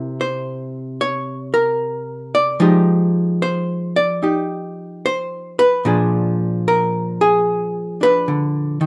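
A miked and amplified archtop guitar plays alone, its dark, clean, picked hollow-body tone sitting up front and reaching from Bb2 to D5. This short solo jazz excerpt has a swinging, sophisticated feel in 4/4 with an eighth-note swing, moving through altered dominant and ninth chords, from C7b9 to Fm9 at 2.6 seconds and Bb7b9 at 5.8 seconds. A moderate club reverb gives the guitar a natural sense of space.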